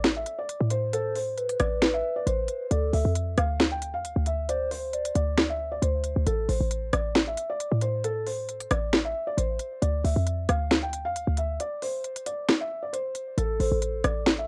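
A sharp trap drum kit of finger snaps, crisp hi-hats, rim clicks and a biting snare sits up front with vintage 12-bit sampler grit and cassette tape color. It drives this brooding, hard-hitting hip hop excerpt in A minor at 135 BPM with a half-time feel, moving between Am and Dm. A punchy, tight 808-style bass decays beneath a soft, intimate felt-muted upright piano melody that is darkened by a low-pass filter and tape. A hollow, woody clarinet-like synth lead with chorus, vibrato and analog delay adds a second line from 0.9 to 5.4 seconds and returns briefly at 13.4 seconds after a break, all within a lightly reverberant home-cassette sound.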